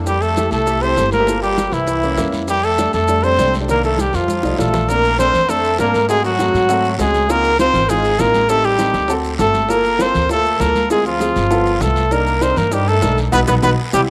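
A clear, up-front trumpet with light vibrato carries the melody in this lively, sophisticated Afro-Cuban jazz excerpt at 199 BPM in 4/4, joined by a punchy, vintage-toned trombone on the second line over a natural baby grand piano, a woody pizzicato upright bass, damped high-tuned congas, very quiet round bongos, a raspy guiro and grainy maracas, all in moderate plate reverb as the harmony moves from F major to Bb major at 4.9 s, with drum fills at 4.3 s and 13.3 s and a closing band accent from 13.3 s.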